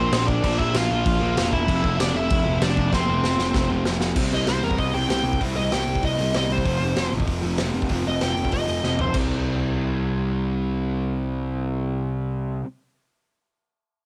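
Punk rock with an upbeat, rebellious drive, this cut from a longer piece has the dry, lo-fi grain of a home cassette recording. A raw garage drum kit sits up front, saturated and gritty, with a punchy kick, medium-tuned snare, hi-hat, toms and crash in a bright stone room, and drum fills arrive just before 4.2 seconds and again shortly ahead of 9.1. A fuzzed, picked electric bass growls up front in the low register, while a sludgy distorted guitar churns out a riff in the background and a very quiet overdriven semi-hollow guitar adds its own riff with a hollow-body tone. A smooth overdriven lead guitar carries the melody and takes a solo from 4.2 seconds, its sound touched by cassette tape. At 9.2 seconds the drums and lead guitar stop, handing the closing stretch to the bass and the two riffing guitars.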